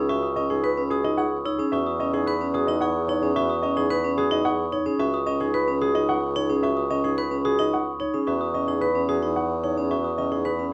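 Close, detailed microphones and a light reverb frame this short passage from a longer classical piece of minimalist pattern music in 3/4, hypnotic and urgent as it alternates between C#7sus2 and Emaj9. A baby grand piano carries the melody with a natural, short-sustained tone, while a bright, dry vibraphone struck with hard mallets, its motor off, and a mellow, bell-like glockenspiel played with rubber mallets supply ringing arpeggios. Underneath, a solo bassoon plays the bass up front, warm and classical in style with a light vibrato.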